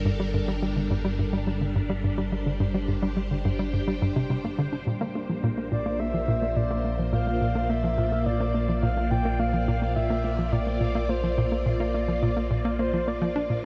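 A steady, straight 4/4 pulse at 106 BPM drives this expansive, cosmic stretch of sequencer-driven space music in Bb lydian, where a hollow, bouncy square-wave pluck with chorus and delay repeats its riff while a filter sweep moves across the arpeggio, all set over an evolving analog drone bass and swirling, vintage string-machine chords treated with ensemble chorus and phaser. At 5.7 seconds a breathy, flute-like synth lead enters up front with tremolo, vibrato and delay, carrying the melody shortly after the harmony has shifted from Gmadd9 to Bbadd9 at 4.9 seconds. The dark production sits in a huge ambient reverb with a long tail, and the passage is cut from a longer piece.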